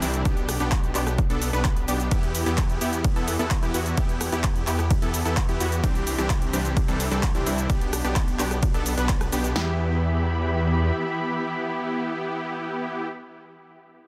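A euphoric, anthemic festival progressive house drop in E minor at 129 BPM opens with a bright supersaw stab riff coloured by cassette tape and digital delay, a thick detuned saw bass with chorus and tube saturation, and veiled, con sordino strings in the background, all pumping to the sidechain, while a layered big-room electronic kit with an up-front kick and snare, metallic hats, handclaps, shaker, ride and rim click drives over G/B, Em and Cadd9 to a band accent at 9.1 seconds, after which the drums fall away near 9.7 seconds and the bass at 10.9 seconds, leaving stab and strings on Em in a dense, heavily limited master.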